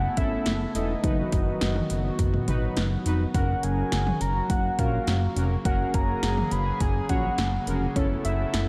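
Soaked in cathedral reverb, this dreamy, bright and nostalgic synth-pop excerpt sets a soft, round octave-layered synth lead with tape echo over a shimmering chorused pulse-width pad and a fat, detuned analog bass, joined at 0.2 seconds by bold, brassy analog synth brass and an overdriven deep house drum kit with a deep kick, punchy snare and metallic hats.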